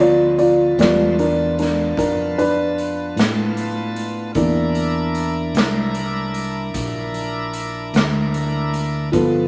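Slow blues in 12/8 with a laid-back, soulful mood, this brief cut from a longer piece centers on a dark, woody upright piano that sits up front and takes a solo throughout, moving from a rootless G9 to C9 at 4.4 seconds. Beneath it, a bright tonewheel organ holds sustained chords through light overdrive and a slow rotary speaker, while a punchy fingered electric bass anchors the low end. A raw garage drum kit of hi-hat, kick and snare enters at 0.4 seconds with a gritty, saturated, pumping room sound, all set in a large studio reverb with vinyl crackle.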